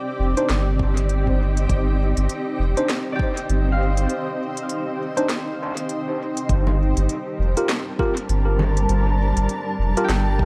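A swung groove of congas, smooth hats and a woody snare from an organic electronic kit, with dub echo, rides over a deep, tape-warm electronic kick and a round, soft sub bass sitting up front in this hazy ambient dub fragment cut from a longer piece. A cloudy, evolving granular pad holds blurred, detuned chords in its own reverb, while a clean tine electric piano through a combo amp drops echoing stabs. A ringing, fingerpicked concert harp adds echoed arpeggios from 3.1 to 5.9 seconds, running into the break, then returns briefly at 10.0 seconds over the Gm7 harmony.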